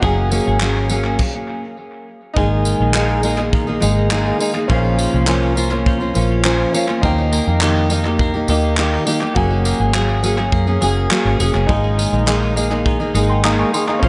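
From the opening moment, a full-bodied, fingerpicked jumbo acoustic guitar and a round, foam-muted electric bass sit up front in this carefree, heartfelt acoustic pop excerpt at 103 BPM, joined by twangy, compressed twelve-string electric guitar arpeggios, a worn, slightly detuned upright piano in the background, and an airy country drum kit with punchy kick, crash, handclaps and tambourine, with the guitars, piano and drums carrying tape echo in a soft-topped, echo-heavy mix that opens on Gbadd9, halts for a stop from 1.2 to 2.4 seconds, and then moves through Absus2, Bbm and Eb.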